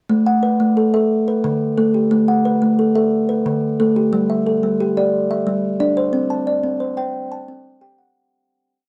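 A solo kalimba, woody and ringing and placed up front, plays a thumb-plucked interlocking ostinato between D3 and A5 in this short, trance-like piece of southern African traditional music, an mbira-style cycle in 12/8 at 119 BPM counted in dotted quarters, moving through A5, D5, G5 and C5 chords under moderate studio reverb and the warbling pitch drift of worn old cassette tape before fading out from 6.1 to 8.1 seconds.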